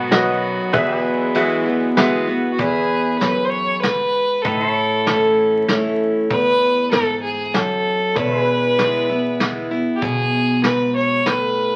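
This honky-tonk and classic country waltz is an easygoing, down-home cut from a longer piece, moving at 97 BPM in 3/4 in E major with the grain and vinyl crackle of a very old 78 rpm record in a moderate studio room. It opens on a B7 that turns to Eadd9, with brief muted, nasal French horn section chords and bright, short-sustained grand piano, both gone before the harmony moves on to A and E. From 2.6 seconds a clear, smooth fiddle takes an up-front solo with light vibrato, the loudest voice in the mix. A full-bodied dreadnought steel-string acoustic guitar picks the accompaniment up front, while a pedal steel guitar holds twangy, clean chords played with fingerpicks and volume swells. Underneath, a soft brush drum kit with a tight kick and rolled-off top keeps time, and a woody, thumpy upright bass sits in the background.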